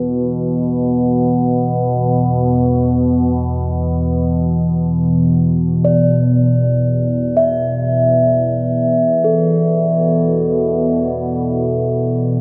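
Bathed in a long, wet cathedral reverb, this haunting excerpt of free-time world meditation music unfolds slowly and spaciously. An evolving wavetable pad drones low and up front, its detuned, vintage sine tone warbling and morphing through a phaser and its own reverb. At 5.8 seconds a bronze singing bowl, struck with a suede striker, rings in higher and airy, its metallic shimmer carrying a slow beating until the close at 12.4 seconds.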